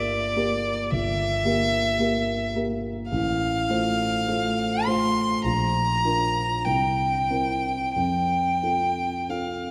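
Bathed in the long, wet reverb of a concert hall, this lyrical romantic classical duo, cut from a longer piece, sets a rich, smooth bowed violin with vibrato up front on the melody over a dark, mellow grand piano whose deep bass, short sustain and vintage character shape the rubato accompaniment, settling on an F chord at 8.0 seconds.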